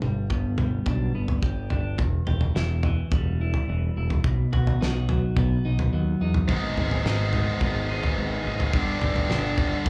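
A loose indie drum kit with a fat snare and tight kick drives this dark, cathartic quiet-loud alternative rock excerpt at 107 BPM in a straight 4/4, alongside a growling, round overdriven picked bass and a clean electric guitar playing phaser-tinged arpeggios over G, Em, B and G#m, until a bright, up-front distorted guitar riff with slapback echo cuts in at 6.5 seconds, captured as a live gig through the venue's PA with light club reverb.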